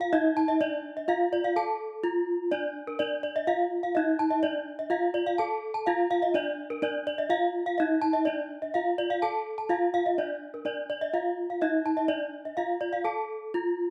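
A stone room's reverb surrounds this hypnotic, shimmering gamelan excerpt, heard as a band playing live in one space at 125 BPM in straight 4/4, tuned to D pelog. One bronze metallophone carries the melody with a ringing, metallic horn-mallet tone and the beating of paired tuning, while a second, close-miked, dry and full, plays bright arpeggios up front until 13.2 seconds. A brief break falls at 1.8 seconds, and the opening section returns at 10.2 seconds.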